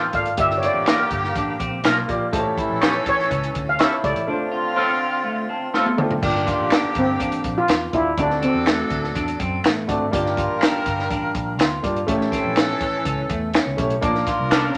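A steel pan carries a shimmering, mellow melody over clear, vibrato-laden horns, a clean hollow-body guitar riff and a round, foam-muted bass, opening this urgent, passionate excerpt of uptempo 1960s-style soul. An intimate grand piano with audible action noise joins, and a dry, punchy cocktail kit sits up front, while very quiet finger snaps enter at 0.9 seconds alongside twangy, slightly broken-up guitar stabs with spring reverb. Piano and drum fills mark the turn to a repeated section at 6.2 seconds, the pan drops out at 9.4 seconds, and a club reverb bathes the whole band.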